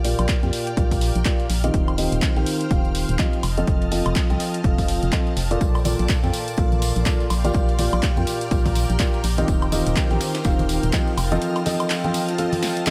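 Piano house at 124 BPM with a swung 4/4 feel and an uplifting, euphoric mood, this excerpt of a longer piece is led by a clear, intimate grand piano riff with audible action noise, filtered, delayed and pumping, over a hollow, organ-like FM bass, shimmering vintage string-machine violins, an airy, breathy pad fading in, a punchy tape-warm electronic kick from 0.3 seconds, an analog drum machine with handclaps, hi-hat, snare and woodblock, a gritty, very quiet sampler-style kit, and soft-handed tambourine and congas joining at 5.6 seconds, moving through Gm7/Bb, Eb69, F7 and Bbmaj7 before a drum fill at 12.6 seconds.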